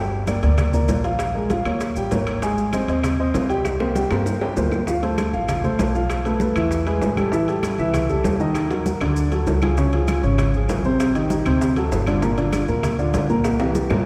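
A dark, mellow baby grand piano up front and a thumpy, gut-strung pizzicato upright bass open this joyful, sunny salsa excerpt, joined within a second by bright hard-hand congas, tight high-tuned bongos, woody claves, grainy maracas and ringing metal-shell timbales, while drum fills arrive at 3.6, 8.6 and 13.4 seconds over a shifting jazz-tinged chord progression, the whole washed in the long, wet reverb of a church.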